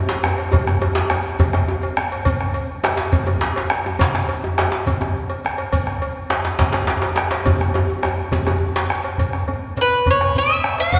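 Round bombo, metallic cowbell and a deep, soft-handed djembe open this powerful, festive West African drum ensemble excerpt at 138 BPM in 12/8, joined by a tight, cracking, hard-handed djembe up front and a grainy, mellow shekere in the background, with a drum fill from 7.5 to 9.2 s before a woody, double-strung picked mandolin enters up front at 9.8 s, the ensemble ringing in the lingering reverb of a church or concert hall.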